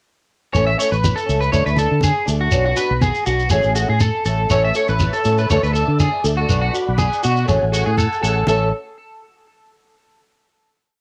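A round, punchy fingered electric bass plays a syncopated riff up front in this short, danceable, carefree highlife guitar band piece, beside a twangy, slightly broken-up electric guitar that repeats a picked arpeggio ostinato through analog chorus. A fingerpicked flamenco guitar strums upper chord shapes, while damped, low-tuned congas in the background and a grainy, mellow shekere keep the pulse. A smooth tonewheel organ with key click and slow rotary sways in as a soft sustained pad at 4.5 seconds, before the groove settles on a final chord at 8.5 seconds, all heard through a lightly reverberant home cassette recording.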